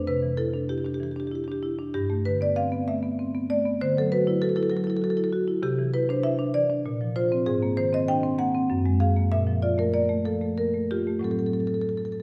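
Moving in a loose three-beat metre, the rhythm breathes freely under a rubato feel, giving this brief cut from a longer piece a flowing, reflective character. It is a contemporary classical work for solo marimba, played with medium mallets across a range from F#2 up to G5. The rosewood bars sound woody and warm, with the instrument sitting up front in the mix. Colorful added-ninth harmonies drift from Cadd9 through G69 and Dadd9 and back to Cadd9, then slide through Bbadd9, G#add9 and F#add9 before settling on Bb5 and closing on Am6 at 11.2 seconds. A wet recital hall reverb wraps the marimba, with the listener placed further back in the room, so each chord hangs in a soft halo across the 12.2-second span.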